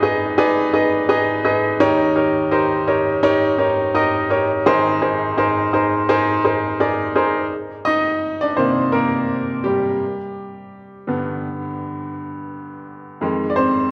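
A lightly swung sixteenth-note feel in 4/4 carries this anthemic, warm pop piece, cut from a longer work and played entirely on a bright, woody upright piano that sits up front and spans from deep bass notes to the upper register. The harmony moves from Abm through Eb7 to Abadd9, then shifts at 7.5 seconds into a solo passage over Cm7, G and Fm7. A moderate scoring-stage reverb gives the piano some air, while a worn, warbling cassette-tape character adds a warbly pitch drift.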